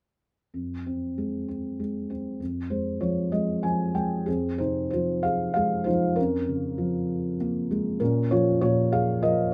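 Close, detailed microphones and a light reverb put a felt-muted upright piano up front, its tone soft, dark and smooth with a vintage, thick-felt character. This short cut from a longer classical piece is a lyrical solo, cool and bittersweet in mood, set in 3/4 with uneven, rubato beats. The piano plays alone throughout, reaching from its low register up into the treble. A brief fill beginning at 2.4 seconds colours the harmony with an Fm9 chord, and a second section opens at 4.3 seconds, where the chords pass through Db6/F to Bbm by 8.0 seconds. The intimate, mellow sound keeps the passage close and private.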